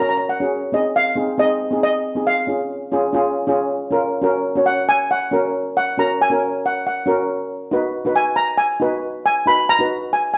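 A lead steel pan carries the melody between D#5 and B5, its shimmering, mellow tone struck with soft rubber sticks and heard up front with a vintage, band-limited character. A double seconds pan plays the accompaniment below it, darker and smooth, in this sunny, festive calypso fragment with a lightly swung 4/4 feel. Both play together in one room with a moderate large-studio reverb, and the second passage begins at 4.2 seconds.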